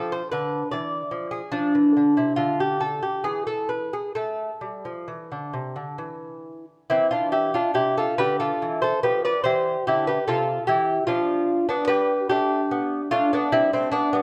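A solo lute, fingerpicked on delicate gut double strings with some octave-doubled courses and placed up front, plays a grave, flowing baroque-style classical dance in 3/4 at a rubato 64-76 BPM, moving from A minor to C major at 6.9 s, tuned to A4 = 437 Hz and set in a moderate scoring-stage reverb, in a short passage cut from a longer piece.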